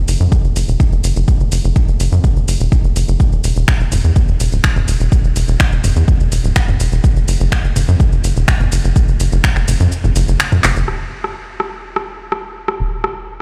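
A steady, straight 4/4 groove opens this melancholic, hypnotic melodic techno excerpt, with a deep, layered, up-front electronic kick from 0.3 seconds and a tape-warm deep house kit of metallic hi-hats, finger snaps, handclaps, rim clicks, shaker and toms. Underneath, a tight, punchy sequencer bass in sawtooth and square-wave tones drives forward with a plucky filter, fast attack and mellow decay, pumping against the sidechain. The kick drops out at 9.9 seconds, a drum fill lands at 10.6 seconds, and the whole plays as if through a big sound system in a bare room.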